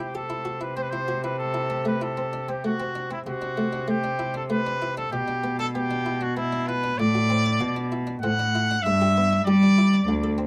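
A baroque-style classical sonata movement with continuo in triple time, serene and radiant, cut from a longer piece and lasting about 10.5 seconds. A clear trumpet with light vibrato carries the melody in a classical style, while a bowed cello with a dark, reedy gut-string tone anchors the bass and a buff-stop harpsichord adds a muted, lute-like plucked accompaniment. Close, detailed miking with light reverb frames a progression that moves from C through Am/C, G6/B and D7/A before settling on G.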